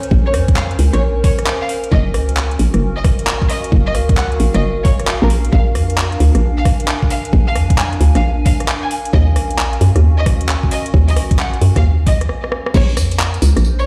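A hollow, knocking FM bass sits up front in this moody, bouncy two-step UK garage excerpt at 133 BPM in Bb minor, driven by a layered, tape-warm electronic kick and a swung garage kit of metallic hats, handclaps, rim clicks, tambourine and crash, while a warbling, lo-fi tape-like pad pumps with sidechain and chorus beneath a floating, sul tasto studio violin section trailing delay, the mix set in a stone-room reverb until a brief stop and drum fill at 12.3 seconds give way to a drop at 12.7 seconds.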